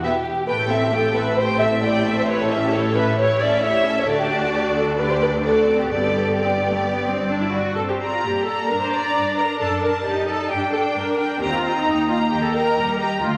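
A straight 4/4 pulse at 133 BPM drives this quick, cheerful and graceful classical-period movement for string orchestra, cut from a longer piece, which opens in G major and turns to G minor at 7.8 s. A rich, up-front first violin section carries the melody over a dark, woody second violin line and an intense, smooth-topped viola accompaniment, while focused cello and double bass sections enter at 0.5 s to supply the bass, all lush and bowed with vibrato. The sound sits in a wet scoring-stage reverb with a layer of vinyl crackle, and harmonies move from Am7 and A7 through D and G before darkening to Gm, D/F# and Eb.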